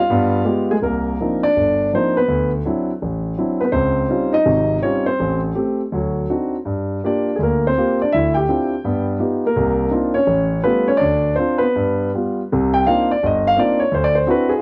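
A lone concert grand piano opens on a G7b9 chord, then moves through rich extended harmony such as Cm11, Dbmaj9#11 and A7b13 with a loose, swung and rubato feel in this late-night, smoky solo jazz fragment. The piano has a warm, open tone with deep bass and sits up front in a dry, close, 1970s-style studio sound. A new section begins at 12.5 seconds, returning to Cm11 before settling on D9 as the recording cuts off at 14.6 seconds.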